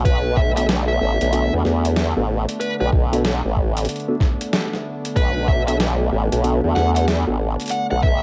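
A swung 4/4 groove at 94 BPM, with a 63% swing on the sixteenths, drives this playful, swaggering glitch hop cut from a longer piece, set in B minor on a single Bm7 chord and tuned to A4 = 436 Hz. Up front, a gritty, thumpy electronic kick anchors the beat alongside a compressed, sampler-style boom bap kit of hi-hat and a medium-tuned snare, both re-recorded in a large room. A formant-sweep wobble bass built from detuned sawtooth and sine layers sits prominently underneath, its chorus and overdrive lending a wobbling, sustained weight. A dark, smooth electric lead guitar carries the melody, picked through overdrive and trailed by dub echo, while a mellow tine electric piano adds stabs from 0.6 s, clean but roughened by 12-bit sampler grit, sidechain pumping and its own dub echo. Behind it all, a warbly, nostalgic tape-like pad holds sustained chords in the background with chorus, built-in reverb and pumping, and the whole dry mix is coated in vinyl crackle.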